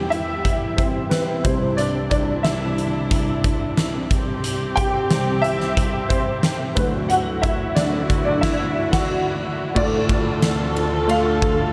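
Anthemic and hopeful, this piano-driven pop clip sets a woody, up-front upright piano carrying the lead through its solo until 9.8 seconds, over softly bowed strings with gentle vibrato and a smooth, intimate top. A huge arena drum kit with a punchy kick, fat snare, hi-hat, ride and crash fills the big room, and the band hits an accent from 8.4 seconds as the harmony moves from Em through Cadd9, C and Dadd9 before turning to Dm. A long, ambient reverb soaks the whole mix in a dreamy haze.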